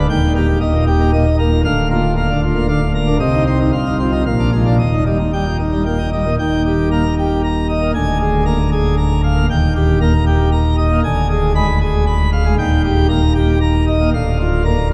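Brilliant and jubilant, this classical organ toccata in 3/4 comes from a longer piece and lasts just under 15 seconds. A single pipe organ plays alone throughout, drawn on full plenum with mixtures, its baroque voicing bright and up front as it spans from a deep D1 to B5 at the top. The harmony centres firmly on Eb, moving through chords such as Cm, Bb7 and a Ddim7 near 11.0 seconds before returning to Eb. The opening phrase gives way to a new section at 6.4 seconds. A cathedral reverb with a long 4.0-second decay surrounds the instrument, while the production leans dark, lending the grand sound a rich, enveloping depth.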